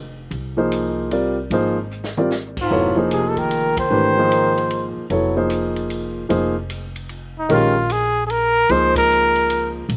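A woody, dark upright bass opens this passage of modal jazz in F dorian, plucked in a swinging 3/4 at 150 BPM. A big-band drum kit with dark cymbals, a punchy kick and a medium-tuned snare follows almost at once, and an intimate, up-front concert grand piano adds chords over a Fm7 harmony, its action noise audible and its low end deep. At 2.6 seconds a warm trumpet takes the melody with light vibrato, sitting forward in the mix, while a mellow bass clarinet plays a second line below it in a subtone with scooped notes, sounding distant and roomy. The band hits a shared accent mid-phrase. The trumpet comes back in at 7.4 seconds for a second statement, and at 7.5 seconds the harmony moves to Bbm11. The sound is dry and open-air, and the mood feels spiritual and searching.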